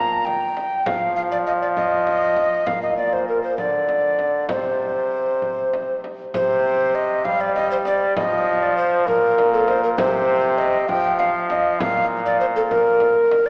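A hollow, airy tenor recorder with chiff and vibrato carries the melody over a brilliant trombone bass from the opening, joined at 0.3 seconds by a close, dry frame drum struck with hard hands, in a solemn, courtly renaissance-style consort dance in a straight 6/8 that sounds cut from a longer piece, washed in a wet church reverb and heard through a small-speaker sound.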